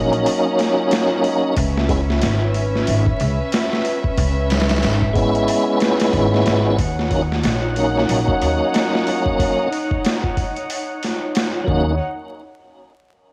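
A cassette-recorded home take with light reverb and a bed of vinyl crackle, this smoky, cinematic trip hop fragment is cut from a longer piece and moves at an unhurried swung 4/4. A tonewheel organ carries the accompaniment from the start, full and up front, its key click and fast rotary speaker colored by chorus vibrato, tremolo, tape echo and a coarse 12-bit sampler grit. Alongside it, a dark string section holds sustained chords, bowed sul tasto with light vibrato and a soft attack, filtered and close so it sits well behind the organ. An acoustic upright bass plucks a woody, steel-strung line up front, while a boom bap sampler-style kit, compressed, pitched down and re-recorded in a large room, pairs a thumpy kick and a high-tuned snare with hi-hat from 0.1 s until 11.8 s. The harmony rests on Ebm7, shifts to Dbm7 at 1.6 s, returns to Ebm7 as a new section opens at 6.8 s, and the parts stop at 12.0 s, leaving a brief unaccompanied tail.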